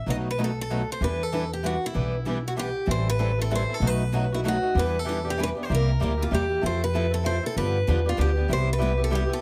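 Virtuosic and bittersweet, this fragment of acoustic string swing in A minor moves at a brisk 192 BPM in 3/4 with a swung eighth-note feel. A boxy, bright parlour-style steel-string guitar carries the melody up front, while a woody, thumpy pizzicato upright bass with gut strings anchors the low end. Two picked acoustic guitars supply accompaniment: a concert steel-string with audible finger squeak and a swing-style guitar with fresh strings. Close, detailed microphones and light reverb frame the group as the harmony turns from B7 and Em7 into a longer passage from 2.9 seconds that ends on Cmaj7.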